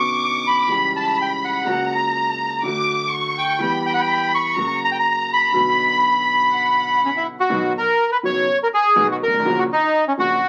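Vinyl crackle from a very old 78 rpm record frames the opening, where a reedy, close-miked bandoneon carries the melody over a bowed violin section, a concert grand piano and a very quiet upright bass. This elegant, playful tango in B minor moves at 123 BPM in 4/4 with a rubato feel, and the clip is cut from a longer piece. The dry, full bandoneon sits up front, and the lush violins, also up front, add an expressive second line with vibrato until 7.2 s. Beneath them the piano gives warm, intimate, smooth accompaniment with deep bass, vintage character and audible action noise, while the gut-strung bass is plucked pizzicato with a woody, thumpy, dark tone. A moderate club reverb surrounds the ensemble, and at 7.5 s a new section begins as the harmony shifts to B major before arriving on F#/A#.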